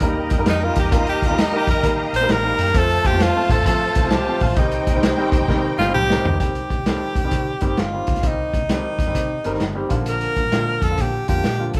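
A bright, close-miked tenor saxophone leads this driving, passionate slice of uptempo 1960s-style soul, entering at 0.5 seconds with a jazz-style solo full of vibrato and scooped notes, sitting up front in a swung 4/4 groove. Behind it, a distant, lush violin section plays an expressive second line, while a fat, lightly overdriven tonewheel organ holds sustained chords in the background, with percussive third-harmonic attack, key click, chorus vibrato and a slow rotary speaker. Both the strings and organ drop away at 6.4 seconds, just after a drum fill that starts at 5.5 seconds. The woody, natural upright piano keeps up accompaniment throughout, and a dark, round, foam-muted electric bass is picked through an amp underneath. The vintage drum kit is muffled and lo-fi with a rolled-off top, a punchy kick and a medium-tuned snare, and it sits prominently in a moderate, large studio reverb that gives the feel of a band playing live in one room.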